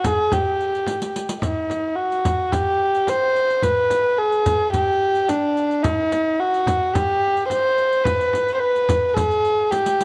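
This festive fragment of a Persian modal ensemble piece opens with a bowed kamancheh and three hand drums all sounding together. It moves at a steady, straight 108 BPM in 4/4, set in the dastgah of chahargah on G. A single kamancheh carries the melody up front between D4 and C5, its dark, intimate tone shaped by a soft attack, light vibrato, gliding portamento and an airy bow. Beneath it, a large frame drum gives a deep, soft-handed foundation, while a riq adds dusky jingles low in the mix and a tight, warm tombak played with hard hands sits in the background. All three drums are close and dry. A drum fill at 0.9 seconds leads into a new passage, another fill arrives at 9.7 seconds, and the frame drum drops out at 9.8 seconds as the excerpt ends. A moderate echo-chamber reverb and small-room ambience give the ensemble a cozy space.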